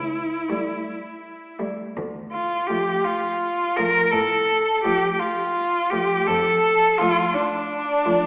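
In a rubato 12/8 lilt, this elegiac, solemn classical fragment for cello ensemble places a rich, focused bowed cello melody with vibrato and a smooth top up front, while a close bass cello murmurs in the background until 7.2 s, and from 0.5 s a distant, even second line and an expressive accompaniment cello with soft attacks and portamento join, all moving from A7/C# to D minor, set in a wet scoring-stage reverb heard from further back with a small-speaker sound.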